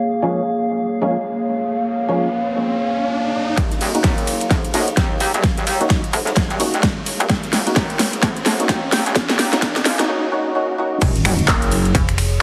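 Bass house with an aggressive, bouncy swing, cut from a longer piece, opening on a warbling, nostalgic pad with a lo-fi, detuned character, chorus and its own reverb, pumping under the sidechain alongside a hollow, percussive organ stab treated with ensemble chorus and digital delay, while a riser and sub drop sit in the background. At 3.6 seconds the build-up arrives: a punchy, overdriven electronic kick and a big-room dance kit with a huge snare, metallic hats, handclaps, finger snaps and crash cymbal hit up front, with a very quiet acoustic studio kit adding hi-hat, ride and a medium-tuned snare underneath. A saturated, wobbling FM bass with chorus and a high-pass filter enters at the same moment, while a filter sweep works on the organ stab and a drum fill runs through much of the section before a short break. The drop lands at 11.0 seconds with an impact, and at 11.9 seconds a digital, tube-saturated FM bass takes the low end to close. 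The harmony moves from Bbm7 to Ebm7, and the whole mix has a heavily compressed, radio-like sound with lossy artefacts and a moderate plate reverb.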